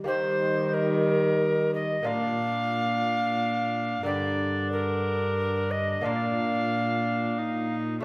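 An airy, close-miked alto recorder leads this festive, courtly excerpt of a renaissance-style consort dance in 6/8, its wooden tone carrying vibrato and a crisp, chiffy attack. Beneath it, a dark, smooth-topped cello sits up front on the bass line, a single bowed viola adds reedy, gut-string warmth in period style, and a delicate fingerpicked lute with double strings plays in the background from 0.0 s. The harmony moves from Eb to Bb, then G minor and back to Bb in a moderate recital-hall reverb, with the recorder stopping at 7.8 s while the other parts carry on to 8.0 s.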